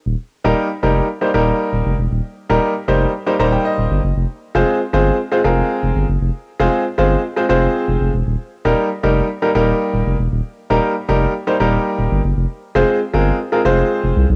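Set in a straight 4/4 at 117 BPM, this upbeat, carefree pop excerpt in Eb major moves between Eb and Fm chords, switching roughly every four seconds. A saturated sub bass carries the low end from 0.1 seconds, its deep, thick sine tone given tube saturation, with a fast attack and long sustain sitting up front in the mix. A bright grand piano provides the accompaniment from 0.4 seconds, its brilliant, polished sound present and up front, with notes that decay quickly. The piano plays a fill between 3.1 and 4.2 seconds before the harmony shifts to Fm. Light reverb and a small room ambience surround the pair, and the cassette home recording gives the clip its character, which is cut from a longer piece.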